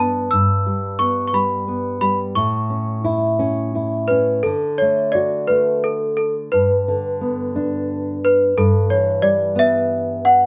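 A gently rocking compound metre, loosened by rubato, gives this short children's lullaby the unhurried sway of a cradle. A worn celesta carries the melody up front, its bell-like, delicate tone sweet yet slightly out of tune, with the knock of hard felt hammers and a vintage, band-limited quality that makes it sound like a well-loved heirloom. Beneath it, a thumb-plucked nylon-string guitar provides accompaniment with a deep, classical, acoustic warmth, its fresh strings ringing clearly up front alongside the melody. The opening phrase moves from Em/G to A, and a second phrase begins at 4.4 seconds, settling through D and G before returning to Em/G. The two players sound as if they share one room, wrapped in a moderate studio reverb that keeps the mood innocent and gentle. This excerpt is cut from a longer piece.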